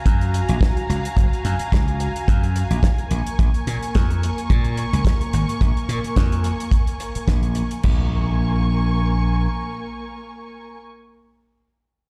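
Nu-disco in Bb minor at 108 BPM, this short cut from a longer piece feels sensual and cosmic, with a light swing on the sixteenths. A dark, woody studio string section holds soft-attacked bowed chords with light vibrato from the start, roughened by vintage 12-bit sampler grit and sidechain pumping, moving from Gbmaj9 to Bbm7 at 3.1 seconds. Up front, a bright, punchy slap bass spans Gb1 to Bb2 alongside a dry, tight kick drum with a rolled-off top. A damped 70s kit adds a fat snare, hi-hat and dark crash cymbals until 8.0 seconds. Around 7.9 seconds a very quiet electronic impact arrives as the music shifts into a new section, and the whole sound sits in a small room ambience, like a big sound system in a bare room, under a large studio reverb.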